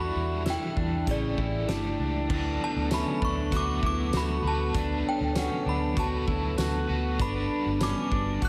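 Floating and ethereal, this dream pop excerpt sets a chiming, inharmonic FM synth chime melody with ensemble chorus, tremolo and analog delay over a bright, overdriven cranked stack guitar carrying tremolo and analog chorus, pure, slow-attack glass harmonica chords, twangy, slightly broken-up electric guitar arpeggios with subtle chorus and delay, and a round, foam-muted vintage fingered bass, while a loose indie drum kit of punchy kick, fat snare, dark cymbals, hi-hat and tambourine enters at 0.5 seconds and a very quiet, bell-like large celesta adds sweet texture from 2.9 seconds, the mix soaked in lush hall reverb.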